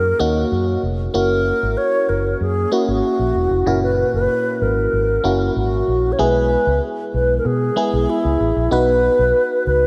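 A pure, close-miked alto flute with vibrato carries the melody through a diffuse ambient delay over a glassy, bell-like FM electric piano treated with chorus and phaser and a dark, round, foam-muted fingered electric bass in this nostalgic, uplifting 1980s-style pop excerpt at 95 BPM, whose dreamy mix is soaked in a lush hall reverb as the harmony moves from D#m7 and F#7 to E/B at 6.2 seconds before settling on B.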